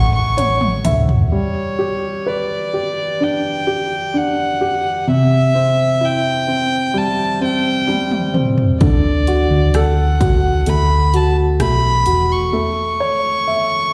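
A slow, straight 4/4 pulse at 64 BPM carries this heartfelt, hopeful pop ballad excerpt, where a pure, floating bowed violin sings the melody over an up-front baby grand piano, both washed in plate reverb and slapback echo, while a dark, round hollow-body electric bass drops out after 1.3 seconds and returns at 8.8 seconds, a punchy, overdriven electronic drum kit with bright hats plays fills, and the bass and drums fall away for a break at 12.5 seconds, all heard as a live gig through a venue PA in club reverb.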